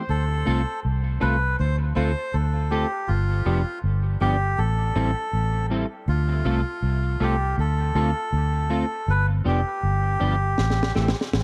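Hypnotic and deep, this dub reggae excerpt moves at 80 BPM in a straight 4/4, sitting in D dorian and cycling through Dm7, G7 and Am7. A reedy, breathy melodica carries the melody up front, its nasal, plastic-cased voice trailing dub echo. Beneath it, a vintage muted fingered electric bass holds the low end with a round, foam-muted, amped tone that sits close in the mix. A clean electric guitar, dark and fingered, fills in the accompaniment from 0.5 seconds, colored by analog chorus and its own dub echo. At 10.6 seconds a dry, high-tuned snare drum with a rolled-off top enters for a short fill that closes the passage. The production is dark overall, with light studio reverb giving the parts a shared sense of space.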